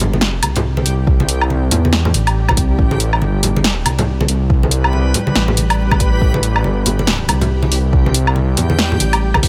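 Opening on a deep, rumbling detuned saw bass, an overdriven deep house kit with a punchy snare, hi-hat and woodblock, and hard-handed congas in dub echo, joined by a dreamy reversed granular texture from 0.3 seconds, this cavernous, meditative deep dubstep excerpt in A minor moves at 140 BPM with a swung half-time feel over an Amadd9 chord before an overdriven electronic kick drops in at 1.1 seconds within a digital ambience.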